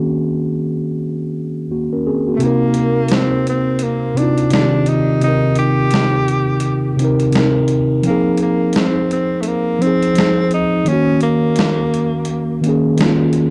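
A dark, softly reverberant lo-fi hip hop excerpt in C minor at 85 BPM with a swung 16th feel, reflective and melancholic in mood, cut from a longer piece. A mellow, clean tine electric piano sits up front from the start, alone until 2.4 seconds, when a breathy tenor saxophone enters with a jazz-style solo full of vibrato and scooped notes, alongside a gritty, compressed boom bap sampler-style kit playing only hi-hat and snare, carrying vintage 12-bit crunch and a large-room sheen. The harmony moves from Ebm7 through Cm7 and Fm7 and back to Ebm7, with the saxophone stopping at 12.6 seconds.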